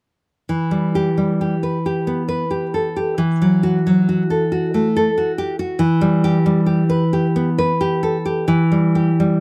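Melancholic and yearning, this brief classical fragment in 6/8 drifts with rubato and uneven beats as a bright, full-bodied fingerpicked nylon-string guitar, set up front in a dry, close 1970s-style studio sound with light reverb, plays an accompaniment from 0.5 to 9.4 seconds that shifts to an Esus24 chord at 3.2 seconds before returning to its opening harmony.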